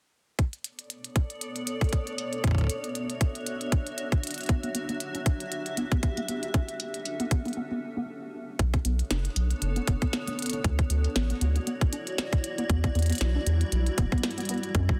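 Melancholic and glitchy, this fragment of a longer IDM piece moves at 117 BPM in B minor with a light 16th-note swing. A tight, tape-warm electronic kick sits up front beside a glitchy kit of clicky hats and a tiny, softly clipped snare, under a blurred, evolving granular pad with 12-bit sampler grit that holds minor ninth, major ninth and minor seventh chords. A deep, resonant acid bass arpeggio with chorus and delay arrives at 4.5 seconds, and after a short break at 7.6 seconds a rubbery, hollow square bass bounces in up front at 8.6 seconds, all under a dense, heavily limited modern master.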